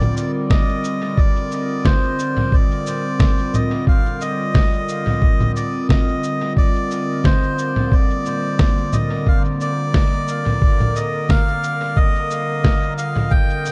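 Spacious and meditative, this ambient dub excerpt at 89 BPM in G minor rests on a single Gm7 chord, with a reedy, breathy melodica melody drifting through dub echo over a warbling, nostalgic tape-like pad, muffled sampler-style congas, cabasa and a fat snare, and an up-front thumpy electronic kick, while a bright, bubbling stepped-filter texture joins in the background at 7.0 seconds, all within an echo-heavy mix.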